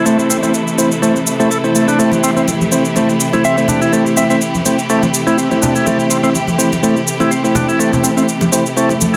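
Raw and funky, this breakbeat excerpt rides a swung groove on one A minor chord, with biting, lush strings holding sustained chords beside a reedy tonewheel organ riff turning through a slow rotary speaker with key click and tube saturation, while a clean tine electric piano jabs out stabs through a combo amp and digital delay. A tape-warm, layered electronic shaker runs throughout, ringing soft-handed congas join at 2.1 s, and a round, gentle FM synth lead with chorus and a telephone tone sounds a brief E5 figure at 3.4 s. An electronic swell arrives at 9.0 s, all set in a moderate studio reverb.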